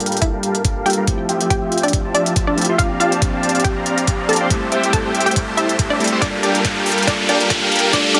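Light reverb and a high-pass filter give this short future bass passage an airy, clean sheen. At 140 BPM in G dorian, with a half-time, gently swung 4/4 feel, it captures an emotional, bittersweet build-up that moves through Gm9, Fmaj7, C7sus4 and Am7 before returning to Gm9. Huge, detuned supersaw chords sit up front, pumping with the sidechain and shaped by a filter sweep. Beneath them, a worn, slightly out-of-tune tine electric piano with overdrive and delay sits quieter, as if heard through built-in speakers. A punchy unison pluck carries the melody from 0.2 seconds with digital delay, alongside a knocking electronic kick, a fat snare and crisp hats, both drum parts layered and tape-tinged. An electronic riser enters at 1.7 seconds, and a drum fill arrives at 6.2 seconds as the build-up presses on.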